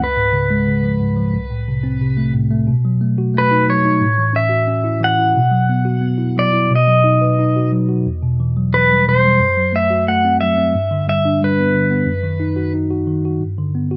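Reflective and heartbroken, this acoustic folk-pop ballad moves at 90 BPM in a straight 4/4. A twangy electric pedal steel guitar carries the melody up front, clean and compressed, played with fingerpicks and slide and shaped by volume swells. A warm tine electric piano, heard through its built-in speakers, accompanies from the low bass upward until the steel drops out at 12.7 seconds and the piano finishes alone in a dry room, as this fragment of a longer piece winds through chords such as Amadd9/C, Emadd9 and F#dim.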